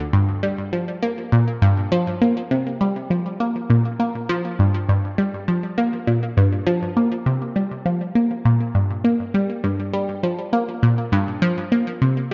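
A warbling, detuned analog sawtooth pluck, up front with chorus and delay, plays alone from 0.0 to 12.3 seconds in a low register in this mysterious, expansive ambient excerpt at 101 BPM in G minor, its round, vintage notes with fast attack and short decay colored by a moving notch filter and set in a moderate spring reverb within an echo-heavy mix whose highs are rolled off above 7.5 kHz.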